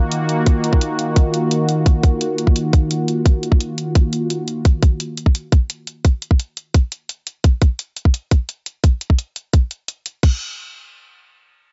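Mechanical and futuristic, this cut from a longer dark technical drum and bass track opens on a sweeping, resonant pad of detuned sawtooth and ring-modulated tones, holding an Eb minor chord up front with chorus and sidechain pumping until 4.6 seconds. A layered drum kit enters at 0.1 seconds, its bright hats and crash carrying a roomy, distorted grit, and a tight, overdriven electronic kick sits prominently from 0.5 seconds. The whole mix is dark-toned under a light reverb, and the drums continue alone after the pad fades.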